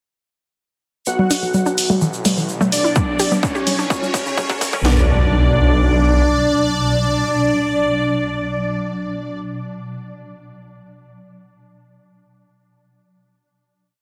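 A dense, heavily limited modern master with light digital ambience frames this short, cinematic and melancholic melodic techno piece in B minor at 127 BPM, building from 1.1 seconds through a chord turn of Bm, A5, Em and F#sus4 before resolving on a held final Bm chord from 4.8 seconds. A soft, smooth supersaw carries a repeating riff melody with 12-bit sampler grit, dub echo and sidechain pumping, doubled an octave higher by a big, bold polysynth with chorus and digital delay, while a lush, punchy unison pluck runs a 16-step arpeggio sequence in the background and a deep, rumbling detuned saw bass holds the root. Filter sweeps on the supersaw, polysynth and pluck drive the build alongside a swarming, tense granular drone, a grainy egg shaker in hand-played sixteenths, up-front electronic congas and open hi-hat, a riser and impact, and a distorted, overdriven techno kit whose four-on-the-floor kick and cracking snare push a drum fill into the final chord.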